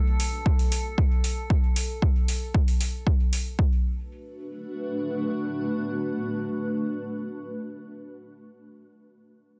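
A hazy, meditative dub techno fragment opens on a dark, blurred granular cloud pad sustaining a Bm7 chord with its own reverb and sidechain pumping, alongside a glassy, chorused harmonics texture that stops at 1.5 seconds, while a punchy overdriven kick and metallic hi-hat sit up front before dropping out by 3.7 seconds, after which the pad carries on alone to 8.3 seconds.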